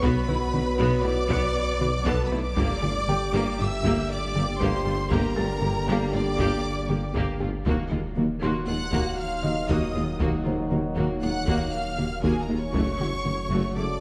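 Moving in an uneven five-beat metre, this tense, futuristic excerpt of a hybrid orchestral and electronic film score rides on hard-stick taiko drums set back in the mix, with a deep sub bass, a mellow tuba, and very quiet cello and woody double bass sections anchoring the low end as the harmony shifts through Bm, Gm, D#m and F#m. A clear, focused violin section carries the melody over a second, softer-attacked violin line and a smooth, even viola accompaniment, all bowed with vibrato and lush. Dark, distant French horns and trombones hold sustained chords in the background, while a very quiet round synth pluck plays arpeggios and a felt-muted upright piano, intimate with audible action noise and a touch of delay, adds texture within a moderate concert hall reverb.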